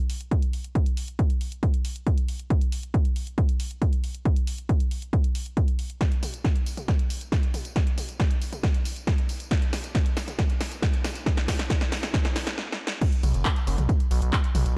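Uplifting trance at 137 BPM with a bittersweet, emotional mood, this excerpt builds on a dry, punchy analog drum machine of snare, handclaps, hi-hat, tambourine, toms and crash cymbal over an up-front electronic kick, with a drum fill from 6.0 seconds and a brief stop at 12.6 seconds before the drop, where a gritty, nasal, saturated synth bass with sidechain pumping enters at 13.2 seconds, all set in a dark digital ambience.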